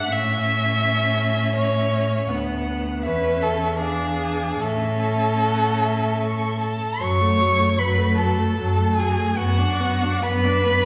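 Warm and lyrical, this slow romantic movement for string quartet sways in a rubato 3/4 at 68-84 BPM, opening in A major before turning to F# minor at 7.0 s. A dark, woody first violin carries the high melody with vibrato from a distance, while the second violin's rich, soft-attacked line sits up front with expressive portamento. The viola adds gliding accompaniment from further back, and a focused cello anchors the bass up close, all bowed by single players and bathed in the long reverb of a recital hall.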